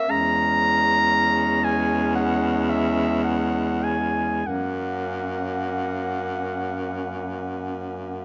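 A clear, close-miked clarinet carries the tender melody up front in this lyrical classical fragment for single-reed quartet, moving in a rubato 4/4 at 46-59 BPM over C#m/E shifting to F# at 4.5 seconds, while a softly placed alto saxophone with light vibrato sings a second line, a mellow, distant tenor saxophone with vibrato adds accompaniment, and a warm baritone saxophone with vibrato and a soft attack holds the bass up front from 0.1 seconds, all bathed in a wet recital hall reverb of 1.8 seconds.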